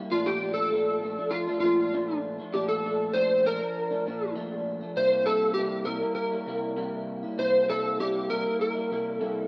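This excerpt opens on an electric guitar played through a small old amp, its picked, compressed tone slightly broken-up and warm, with an analog chorus and a warbly pitch drift that gives the accompaniment a wobbly, aged quality. An electric slide guitar carries the melody from 0.1 seconds, sitting up front with a dark, gritty edge, played with fingerpicks and a slide, and colored by ensemble chorus and tape echo. The mood is laid-back and dreamy, an indie pop groove in a straight 4/4 with a Lydian brightness to its harmony. The chords move from Bbmaj7 to C7 at 5.0 seconds, and the tuning sits slightly below standard pitch. Light reverb and a digital ambience surround the pair in a rough home demo mix, and both guitars play through to the cut at 9.5 seconds.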